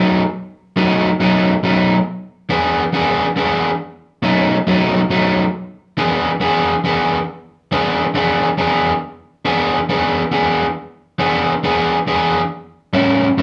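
A small club room with a moderate reverb frames this rollicking, laid-back blues excerpt in E mixolydian, swung at 138 BPM in 4/4. An overdriven semi-hollow electric guitar sits up front and plays solo from start to finish, its picked, hollow-body tone warm and gritty as it ranges from A2 to G#4. The harmony moves between B7 and E7 across two matching passages, the second beginning at 6.0 seconds.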